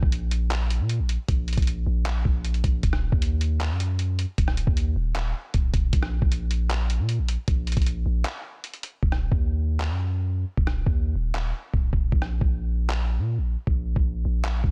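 A half-time trap groove at 155 BPM in 4/4 drives this menacing, hard-hitting hip hop excerpt in Eb harmonic minor, tuned slightly low to A4 = 438 Hz. A lo-fi, sampler-style drum kit of handclaps, hi-hat, kick drum and rim click sits up front, its compressed, pitched-down, muffled sound roughened by vintage 12-bit grit and anchored by a thumpy kick. Alongside it, a long sustained 808-style bass moves between D1 and Bb2, deep and sine-like, with a fast attack and a mellow decay, also placed up front. A short break arrives at 8.3 seconds, and from 9.0 seconds the hi-hats drop away for the rest of the clip, leaving the claps, rim clicks, kick and bass to carry the closing passage until 14.7 seconds. The mix is dry, with little reverb, and the master is dense and heavily limited in a modern style.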